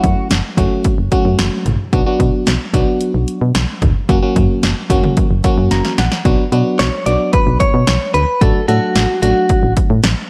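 A punchy analog drum machine drives this synth-pop piece at a straight 111 BPM in 4/4, its kick and snare set up front with a tape-warm edge and gated reverb on hi-hat, kick, snare and toms. The mood is melancholic and nocturnal, in B minor, moving from F#m through Bm and F# before settling on Bm and D/A. A solid FM bass sits underneath with a round, mellow tone and fast, decaying notes, while a glassy FM electric piano carries the accompaniment with bell-like attacks, a noise layer and a warbling chorus. Near 5.4 seconds the electric piano plays a fill, joined by a drum fill that leads into a new section at 6.3 seconds. A bright, clean electric guitar, recorded direct and compressed, appears only briefly at the opening and then takes the picked melody from 6.8 seconds, touched by slapback echo. Light digital ambience surrounds the mix in this short cut from a longer piece.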